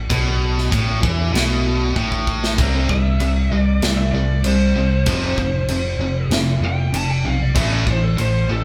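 A big-room acoustic drum kit sits up front in this heavy, menacing hard rock excerpt at 96 BPM, its punchy kick, medium-tuned snare and bright crash cymbals driving a straight 4/4 feel, with a fill from 2.0 to 2.6 seconds. Two picked guitars play the riff over A5, C and F5 chords: a tight, bright, distorted one and a warm, hollow-body semi-hollow one sitting in the background. A warm, amped, overdriven fingered bass punches beneath them. From 2.9 seconds a dark lead guitar through a small cranked amp takes a solo with overdrive and slapback echo, all in a live-room sound with moderate reverb.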